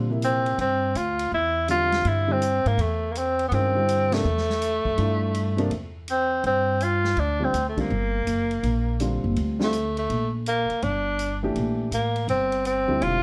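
Modal jazz in G dorian at a swinging 164 BPM, this hypnotic, spiritual excerpt centres on a breathy tenor saxophone that carries the melody up front with vibrato, scooped notes and a soft attack, set in plate reverb. A woody pizzicato upright bass and an intimate grand piano with audible action noise and short sustain move between Gm11 and Am voicings, while a vintage drum kit with a tight kick and rolled-off top sits low beneath them. The band hits accents together at 4.1 and 7.7 seconds in a moderate studio ambience.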